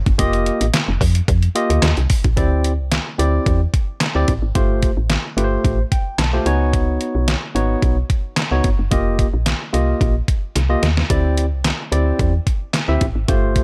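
Dry and close, this smooth, feel-good snippet of early-eighties boogie funk sets a round, woody FM bass and a detuned, overdriven 8-bit drum machine with thumpy kick, snare, hi-hat and handclaps beneath a bright, barky tine electric piano that comps through sus4 ninth chords and adds a fill at 5.6 seconds, before the drums take a fill of their own at 10.6 seconds.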